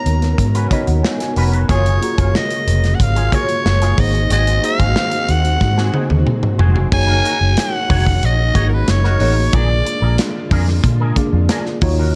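A straight 4/4 groove drives this upbeat, urban slice of polished 1980s jazz-funk pop, cut from a longer piece: an up-front acoustic drum kit with a punchy kick, medium-tuned snare, hi-hat, crash and a rolled-off top, rolling into a fill at 5.6 seconds. A dark, round, foam-muted fingered bass sits up front with it, while a clean, picked, twangy guitar riff runs through an envelope filter and ensemble chorus. A worn, slightly out-of-tune tine electric piano, lightly overdriven and given analog chorus through its built-in speakers, comps the changes from G#m11 to F#maj9 and adds a fill at 0.4 seconds, as a lush bowed string section holds expressive, vibrato-rich chords in the background. On top, a raspy, gritty soprano saxophone with pop-style vibrato and digital delay carries the melody until 10.2 seconds. The small room and dark production give the whole cut a warm feel.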